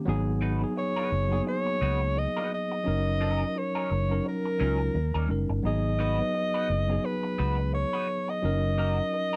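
Silky and smooth, this soul excerpt sits at 86 BPM in G# minor with a lightly swung sixteenth-note feel, moving through G#m7, F#6 and D#7 in a dry, close 1970s-style studio sound with light reverb. A worn, slightly out-of-tune tine electric piano heard through its built-in speakers carries the accompaniment up front, while a dark, round, foam-muted fingered electric bass enters at 0.1 seconds with a punchy presence. An electric guitar through a small old amp adds a slightly broken-up, lo-fi wah riff from 0.4 seconds, and a warm alto saxophone takes the solo melody at 0.8 seconds with vibrato and a smooth top.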